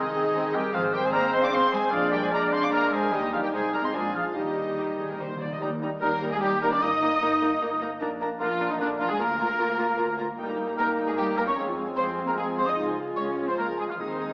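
A quick, straight 3/4 at 150 BPM carries this cheerful, graceful classical-period orchestral passage in Eb major, cut from a longer piece, where a veiled, con sordino violin section sings the melody over a second muted violin line, a pure flute, a clear clarinet and a softly attacked oboe, while a dark bassoon and a background viola section fill in the accompaniment, a mellow French horn section holds very quiet sustained chords, a muted cello section and a double bass section (entering at 0.7 s) anchor the bass, and round, soft-mallet timpani add a fill at 4.4 s and return at 14.0 s, all set in a wet scoring-stage reverb with a small-speaker sound.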